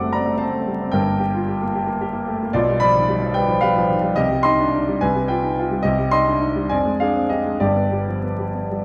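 Brooding and bittersweet, this brief fragment of a romantic character piece for solo piano unfolds in a rubato 6/8, its up-front, natural-toned grand reaching from deep bass to bright upper notes as the harmony drifts from D7/F# through Gm, Cm and a diminished chord before settling on G, all set in a wet recital-hall reverb with a dark, warm production and a vinyl crackle.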